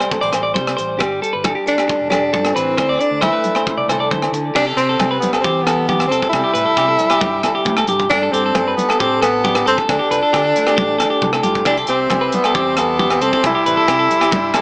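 A sunny, joyful highlife guitar band groove at 135 BPM in 4/4 opens at once with an up-front tenor saxophone carrying the melody, soft in attack with vibrato and scooped, jazz-style notes, touched by analog delay. Around it, a bright, twangy clean electric guitar picks compressed arpeggios through its own delay, while a fingerpicked flamenco guitar with fresh strings sits in the background. A tight funk drum kit, distant and roomy with a rolled-off top, plays crash, hi-hat, kick and rim click, joined by ringing agogo bells and hard-handed, damped congas further back. A round, amped fingered electric bass enters at 0.2 seconds, and the chords move through mostly suspended shapes in C major before settling on Cadd9 at 11.7 seconds, where a very quiet, buzzy vintage combo organ adds sustained chords. The whole excerpt has a moderate plate reverb and a small-speaker sound, and it is cut from a longer piece.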